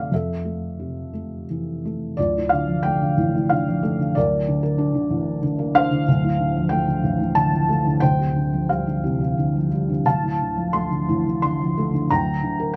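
A felt-muted upright piano carries this short passage of lyrical classical solo piano on its own, its tone soft and intimate, with thick felt dulling the hammers and the action noise audible up front. The piece sits in D minor and moves in 3/4 at roughly 83-96 BPM, the rubato feel letting the pulse breathe. The tuning rests slightly low at A4 = 438 Hz, and the part ranges from a deep D1 up to C6. Opening on Fmaj7, the harmony settles onto Dm at 2.2 s and then drifts through Bbmaj9/D, Dm7, Csus4/D and back to Dm7, ending on Gm/D at 12.1 s. For all its minor-key colouring and mellow, darker timbre, the mood comes across as sunny and hopeful, framed by a moderate studio reverb in a brief stretch cut from a longer work.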